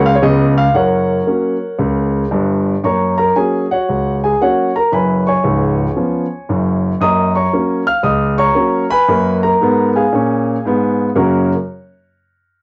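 Stride jazz piano with a swinging, playful mood, cut from a longer piece and played by a solo concert grand that sits up front with deep bass, an open tone and long sustain, reaching from C#1 up to E#6 across its 11.5 seconds. The harmony moves between C#7 and F# chords, touching a C#7 over an F# bass near 9.1 seconds before settling on F# at 11.2 seconds. It has the homely feel of a cassette recording in a small room with moderate reverb, its top end dulled and rounded off.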